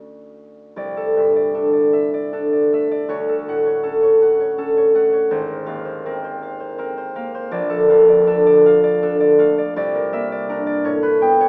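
Dreamy and serene, this brief classical passage for solo concert harp, cut from a longer piece, drifts in a rubato 6/8 at about 54 BPM, its bright, thumb-plucked, ringing tones sitting up front across a range from G#1 to G5 as the chords glide from Dmaj7 through C69, G#69 and Bbmaj7 to C9 and A9, all tuned to A4 = 444 Hz and set in light reverb with a small speaker sound.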